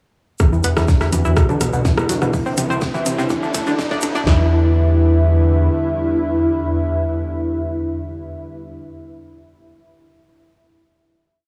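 A gritty, nasal driven synth bass rolls in saturated sixteenths beneath a punchy four-on-the-floor house kick and snare in this melancholic, cinematic melodic techno build, joined by overdriven deep house congas, metallic hats and rim clicks, a dry, high-tuned reggae breakbeat, a grainy hand-played shaker, a fat, detuned analog lead riff with vibrato, round chorused pluck arpeggios in a 12-step loop, a lush, warbling unison pad and a background riser, all driven by filter sweeps and a drum fill until 4.3 s, when the drums stop and a swarming, wave-folded drone enters at 5.3 s to sustain the final Em7 chord with the lead and pad.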